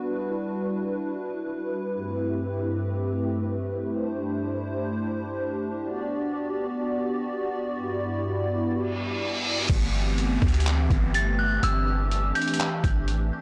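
A blown-out, overdriven recording with light digital ambience frames this short cut from a longer atmospheric cloud-rap track, blissful and floating at 124 BPM in a half-time 4/4 feel, tuned to A4 = 439 Hz. A hollow, flute-like pad opens the piece alone, holding mellow, detuned chords that warble with ensemble chorus and sidechain pumping as the harmony moves from Em9/G through Am9/G and D9sus4/G to Gmaj7. An electronic reverse cymbal and downlifter enter at 8.9 seconds. At 9.7 seconds a deep, boomy 808-style bass with tube saturation arrives up front together with a gritty, pitched-down trip hop sampler-style kit, whose thumpy kick, hi-hat, handclaps and crash carry a tape-like, compressed character re-recorded in a large room. At 11.2 seconds an eerie, inharmonic FM bell melody sounds high above, its tone shaded by chorus, tremolo and delay.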